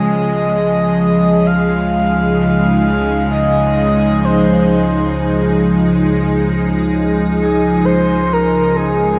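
In free time, this serene ambient passage, cut from a longer piece, rests on a Db major chord for its 9.2 seconds. An evolving, detuned wavetable pad sits up front with chorus and its own reverb, and a soft, breathy, flute-like synth lead with vibrato, subtle chorus and diffuse delay fades in across the whole stretch. A string-like drone with a tense, bright edge, phaser and vibrato hums in the background, while a round sub bass on Db2 fades out beneath them, all bathed in a cathedral reverb with a 6.0-second tail and a dulled top end.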